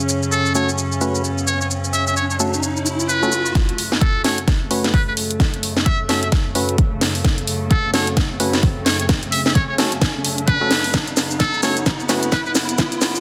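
A buzzy, metal-muted trumpet plays a jazz-style solo melody with dub echo over this aggressive, gritty bass house excerpt at 130 BPM in F# minor with swung 16ths, joined by hollow, dark organ stabs carrying chorus and sidechain pumping, reedy bowed chamber strings pumping on sustained F#m chords, a cracking garage kit of hi-hat, shaker and snare, a background riser from 1.4 s, and a punchy, up-front electronic kick that arrives at 3.6 s with a build-up, drum fill and filter sweep on the stab, under a dense, heavily limited master with moderate room reverb.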